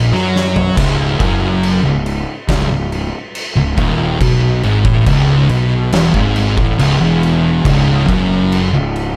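Heavy and ominous, this short stoner and doom metal passage crawls along at 70 BPM in a straight 4/4, centred on C# minor. Two thick fuzz guitars play the riff through distortion from the start, sitting back in the mix, one with a mellow tone and the other darker. Beneath them, a fingered electric bass adds growly fuzz, overdrive and tube saturation with a direct, amped character. An oversized, low-tuned acoustic drum kit enters at 0.1 s with a punchy kick, a medium-tuned snare, shadowy crash and splash cymbals, and toms, its gritty, saturated sound set in a bright stone room. A drum fill runs from 0.3 to 0.8 s as the harmony moves from a rootless Bmaj7(no3)/A# onto C#m at 0.8 s. The overall mix is dry, with little reverb, and the passage is cut from a longer piece, running to about 9.2 s.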